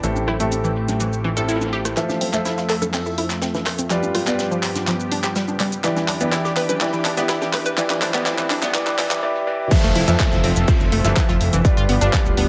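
A straight 4/4 pulse at 124 BPM drives this expansive, euphoric progressive house excerpt over an Am7, Fmaj7, G7 and Em7 progression. A lush, detuned pad sits in the background beneath a round, chorused analog pluck arpeggio and clear, vintage-toned grand piano stabs through a low-pass filter and delay, each pumping with sidechain. A tape-warm deep house kit of claps, shaker, hats and crash, a very quiet dry 70s kit, distant overdriven electronic congas and rim clicks, and faint swells and risers carry a build-up with filter sweeps and a drum fill. A break at 9.2 seconds gives way to the drop at 9.7 seconds, where a punchy overdriven kick lands up front and the fat, tube-saturated sawtooth bass returns.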